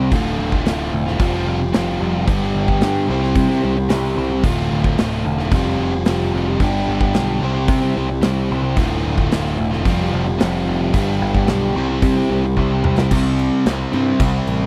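Swaggering and gritty, this classic rock passage at 111 BPM in a straight 4/4 is cut from a longer piece and captured as a dry, close 1970s-style studio recording in a small room. Two overdriven guitars carry the riff from the start, one biting and the other a semi-hollow with a hollow-body tone and spring reverb, both up front and spanning D2 to C5. Beneath them a growling picked electric bass, bright and overdriven, holds the low end, while a big acoustic rock kit with bright cymbals, a medium-tuned snare and a punchy kick drives everything forward. The riff cycles through Dm, Fsus2, G and C three times, and a drum fill at 12.6 seconds leads into a new section at 13.1 seconds built on C5. There a crunchy, double-tracked overdriven guitar joins in the background, sitting lower in the mix than the other guitars.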